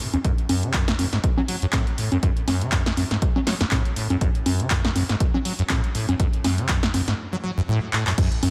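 A squelchy, resonant sawtooth acid bass leads this hypnotic, trippy acid house excerpt, cycling a riff between E2 and F#3 in F# minor with filter sweeps, a fast attack and a decaying tail, colored by tube saturation, lush chorus, delay and sidechain pumping. The tempo sits at 121 BPM in 4/4, with a 56% swing on the sixteenths giving the groove a loose shuffle. A punchy, dry analog drum machine runs throughout, bringing congas, crash cymbal, handclaps, hi-hat and a punchy snare up front. A tape-warm electronic kick, re-recorded in a small room, thumps forward in the mix from 0.2 s to 8.3 s, and a drum fill arrives at 7.9 s. A moderate hall reverb with a 2.1-second decay soaks the whole mix in a dreamy haze, and the passage is cut from a longer piece.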